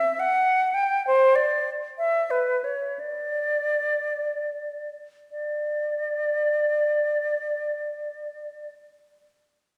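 Unmeasured and free in time, this short passage from a baroque-style fantasia for unaccompanied flute unfolds with a serene, radiant calm, and it gradually slows from 0.2 to 5.3 seconds. A single concert flute carries the whole line, moving within a compact upper-middle range and tuned slightly high, to A at 443 Hz. Its tone is pure and expressive, with vibrato and a crisp attack that gives each note a clear start. The flute sits up front in the picture, yet the recital hall's wet reverb, with a decay of 1.6 seconds and the sense of a listener placed further back in the room, wraps it in a soft glow. After the opening phrase settles at 5.3 seconds, a second phrase begins, and the flute falls silent at 8.7 seconds as the clip, cut from a longer piece, draws to its close.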